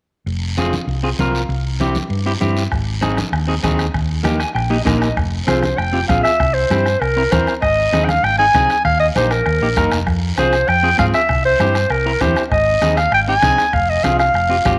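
A passionate, danceable cumbia opens with a round, punchy hollow-body bass up front and a raspy, close guiro, soon joined by a dark, slightly broken-up electric guitar and damped, low-tuned congas sitting in the background. A soft-beater bombo arrives at 2.7 s, and a clean guitar fill at 4.2 s leads into a second section, where a breathy clarinet takes the solo melody at 5.5 s with a jazz-style subtone and light vibrato. A moderate echo-chamber reverb gives the whole mix a roomy glow, and the passage is cut from a longer piece.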